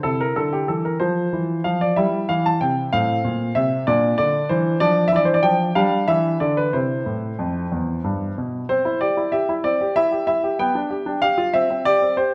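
A clear, up-front grand piano carries this cheerful, elegant classical-period sonatina alone, its tone present with a worn character. The music moves in 6/8 at 63 dotted-quarter beats per minute, with a straight feel, starting in F major and settling into C major from 4.8 seconds. Across a range from E2 to A5, the harmony passes through chords such as F/A, Bb and Dm before reaching a G7/B that leads toward the close. The opening section runs to 8.7 seconds, after which a contrasting second section carries the passage to 12.3 seconds. A moderate recital-hall reverb surrounds the instrument, and this short fragment is cut from a longer piece.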